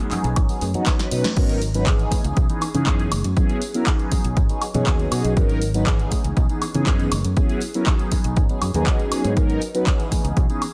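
Filtered disco house at 120 BPM in 4/4 with a straight, funky and nostalgic feel, this cut from a longer piece opens on mellow, brassy sawtooth synth brass, detuned and up front with chorus, phaser, a filter sweep and sidechain pumping, over a dark, round fingered electric bass and very quiet, bright congas and tambourine. A punchy analog drum machine adds crash, handclaps, hi-hat, snare and woodblock with a short room on snare, clap and hats, while an up-front electronic kick enters at 0.4 seconds. A drum fill and band accent lead into the drop at 1.4 seconds, where the harmony cycles through B69, G#m11, C#m9 and F#7sus4 under light reverb and digital ambience.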